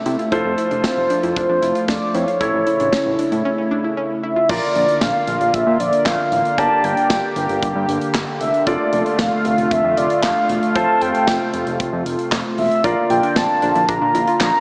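Synth-pop at 115 BPM with a driving yet melancholic mood, this brief cut features a mellow, warbling horn-like synth lead with vibrato, chorus and analog delay carrying the melody over clear, polished baby grand piano, a smooth detuned analog pad, a fat saturated analog bass and a modern studio drum kit with a punchy kick, bright cymbals and handclaps, while a round analog pluck plays background arpeggios until 4.5 seconds and returns at 12.8 seconds, all soaked in a lush hall reverb, with the dreamy mix carrying a small speaker sound.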